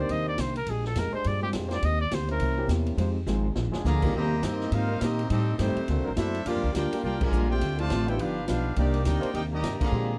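A scooped, vintage-toned solo trumpet with light vibrato leads this energetic big band swing up front until 2.7 seconds, and at 3.9 seconds a bright, roomy trumpet section takes the melody over a tight, clear trombone second line, while a woody pizzicato upright bass and a punchy swinging drum kit, with a fill at 3.3 seconds, drive the groove beneath a close-miked trombone section holding sustained chords, and a long-sustaining grand piano and a fresh-stringed, picked steel-string acoustic guitar accompany in the background of a dry, close studio sound.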